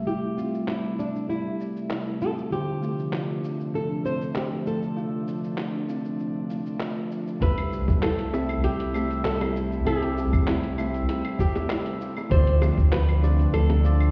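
Heard muffled as if through a wall in a stone-walled hall, this warm, sunny sunset chillout excerpt layers a bell-like tine electric piano, an airy, breathy chorused pad with a filter sweep in the first 7.4 seconds, a boxy fingerpicked flamenco guitar melody with delay, a soft buzzing kalimba arpeggio filtered and delayed in the background, and a dusty, gritty sampler-style kit of claves, handclaps, hi-hat and shaker, before a deep, round sub bass sits up front and a thumpy electronic kick drum arrives at 7.4 seconds, with very quiet, tight, high-tuned bongos following at 7.9 seconds.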